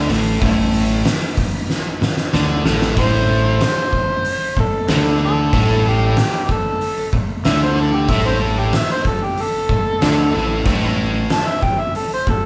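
A live band in one room, lightly touched by reverb, delivers this gritty, raunchy cut from a longer blues rock power trio and southern rock piece at 94 BPM in a straight 4/4. A dark, double-tracked fuzz guitar sits up front, picking a compressed, distorted riff over an Asus4 chord, while a fingered electric bass, direct and amped, adds a growly, overdriven fuzz underneath. The oversized low-tuned drum kit sounds saturated and punchy, with a fat snare and a punchy kick ringing in a bright stone room, and it rolls through a fill from 1.7 to 3.0 seconds. At 3.0 seconds an amplified, overdriven harmonica steps to the front for a jazz-style solo, full of vibrato, scooped notes and tongue slaps. Its warm, gritty tone rides high above the low end until the cut.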